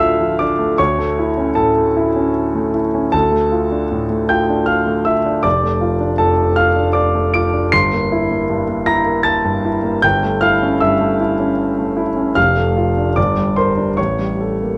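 A concert grand piano carries this romantic character piece alone, its tone clear and intimate, with deep bass, long sustain and the noise of its action audible. The mood is bittersweet and brooding, set in D minor at 77 BPM in 3/4, with a rubato feel that lets the pulse breathe. Across its span from F1 to D7, the harmony moves from D minor through A over D, D minor over F and E diminished over G to A7 over G. It returns to D minor over F, then closes on G minor and an A7 flat nine at 14.0 seconds. The production is dark and warm, placing the polished piano up front in a moderate large-studio reverb. This passage, cut from a longer piece, runs 14.8 seconds as a single section.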